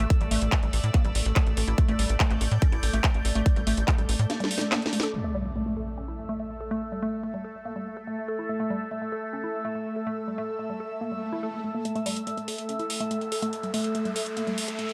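A punchy, up-front electronic kick drives this psychedelic trance excerpt at 143 BPM, pounding alongside a tight, saturated sequencer bass with a moving notch until the bass drops out at 4.3 s, as a drum fill and break begin. A woody, wave-folded pluck riff with a short decay and a dark, chorused edge runs throughout, carrying delay and its level pumping with the sidechain, while an overtone-sweeping drone holds resonant sustained chords, colored by phaser and vintage 12-bit sampler grit. An airy, breathy pad with a detuned, soft character floats high above, also pumping with the sidechain. The techno kit of cracking snare, handclaps and metallic hats, re-recorded in a small room, plays through the opening drop, yields at 5.1 s to an impact and a filter sweep on a synth arpeggio sound, then returns at 11.8 s as a swell gives way to a riser and build-up. The mood is psychedelic and driving, set in light reverb.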